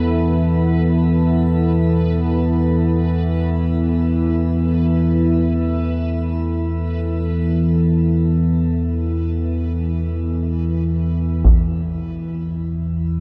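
Ominous and unsettling, this dark ambient drone excerpt sets a rumbling sawtooth-and-triangle drone up front beneath a moody, detuned, chorused pad holding Esus4, while a faint reversed, granular texture shimmers and fades away in a vast, echoing cathedral space, until a heavy, low-passed taiko ensemble strikes at 11.4 seconds as the harmony settles onto Em.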